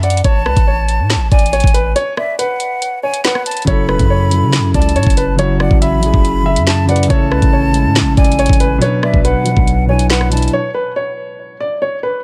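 A drill drum kit sits up front with a knocking kick, woody snare, metallic hats, handclaps and rim clicks, all roughened by vintage 12-bit sampler grit, in a dark, ominous hip hop drill cut from a longer piece at 140 BPM in a half-time 4/4 feel in F# minor. Beneath it, a long sustained 808-style bass gives deep, sine-like tones with a fast attack and mellow decay. A smooth, vintage-toned grand piano with short sustain carries the melody, and a breathy concert flute with vibrato and a crisp attack floats above as a second line through tape echo. A break from 2.0 to 3.7 seconds interrupts the harmony, and at 3.6 seconds a dark concert grand piano enters up front with accompaniment, its deep bass and long sustain thickening the low end. The chords move through Amaj7, F#m7 and Bm, set in a small room ambience. At 10.5 seconds the drums, bass and flute stop, and once the accompaniment piano fades at 10.6 seconds, the melody piano carries on alone to the end.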